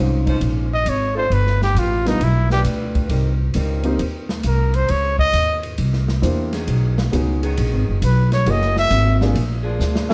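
Swinging, brassy big band jazz in which an up-front trumpet with vibrato takes a warm solo over woody, thumpy pizzicato upright bass, an intimate grand piano with audible action noise, tight sustained chords from a distant, clear saxophone section, and an airy, polished drum kit with a punchy kick that closes on a fill at 9.8 seconds, all set in light reverb as if heard from further back in the room in this short clip cut from a longer piece.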